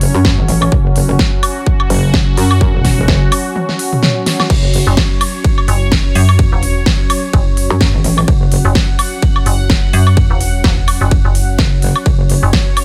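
A swung 4/4 groove at 127 BPM drives this aggressive, gritty bass house excerpt, with a punchy, tape-warm electronic kick up front over a layered big-room dance kit of huge snare, crisp hats, crash, ride, toms and woodblock, broken by a break and drum fill from 3.6 to 4.5 seconds. A saturated, compressed wobble bass with chorus and sidechain pumping plays in bursts, and a decaying, digital-sounding metallic FM bass enters at 4.9 seconds. Throughout, a bright, detuned sawtooth pad holds sustained chords, evolving and resonant with ring modulation and a filter swell, all set in a digital ambience.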